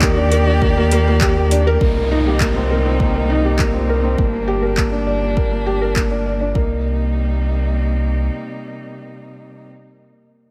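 A drop opens this hypnotic, melancholic piano-and-strings electronica excerpt at 101 BPM in C minor. A soft, intimate felt-muted upright piano riff with delay sits up front over a round, dark analog bass with tube saturation and sidechain pumping, while an overdriven deep kick and a deep house kit of handclaps and metallic hats drive the straight 4/4. A bowed string quartet, one player per line, holds sustained chords with vibrato and portamento as the harmony moves from Ebmaj7 through Cm7 and Gm back to Cm7; a very quiet downlifter runs from 1.8 to 6.6 seconds, and the piano plays alone after 9.7 seconds in a light reverb.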